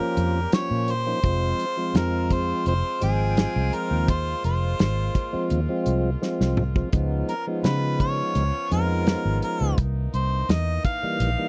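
Smoky and soulful, this straight-eighth soul blues excerpt moves at 84 BPM in F minor, with a clear, overdriven harmonica singing the melody over a fat tonewheel organ that carries key click, chorus vibrato and a slow rotary speaker. A dark, round, foam-muted electric bass and an up-front soul drum kit with a tight kick and rolled-off top hold the groove, and the drums break into a fill at 6.2 seconds. A brilliant horn section sits in the background with sustained, octave-doubled chords, all in a dry, close 1970s-style studio sound with light reverb, as the chords move from Bbm through Fm and Db7 to C7#9.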